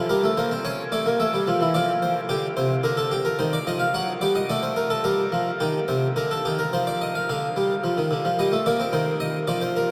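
A solo harpsichord sits up front in a vast, echoing space, its plucked Flemish-style tone brilliant and doubled by octave strings while a huge, wet reverb lingers long behind every note. This classical, baroque-style two-part invention moves in a straight triple metre with a driving, serious character. The harpsichord carries both voices alone from 0.0 to 9.9 seconds, ranging from C3 up to F#5. The first section runs to 5.6 seconds, where a second begins. Across the passage the harmony moves from the minor home chord through colour chords such as an added-eleventh minor and a suspended second toward a major-seventh sonority near the close. Cut from a longer piece, the passage stops at 9.9 seconds, its ringing reverb filling the space.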